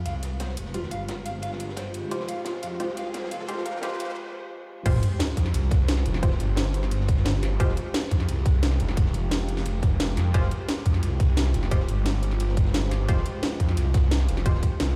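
Dark, futuristic technical drum and bass, cut from a longer piece, where a growling, detuned saw bass snarls up front under a deep, moody pad with chorus and sidechain pumping, while filtered dub chord stabs with delay and a dark, slightly broken-up electric guitar playing fingered arpeggios sketch the opening build-up. A riser and sub drop sit in the background as a filter sweep on the stab runs toward a short break at 4.2 seconds. The drop lands at 4.9 seconds with a tight, layered electronic kick joining an overdriven kit of cracking snare and bright hats, layered over a gritty, rolled-off breakbeat kit tucked in the background, all played back through a big sound system in a bare stone room.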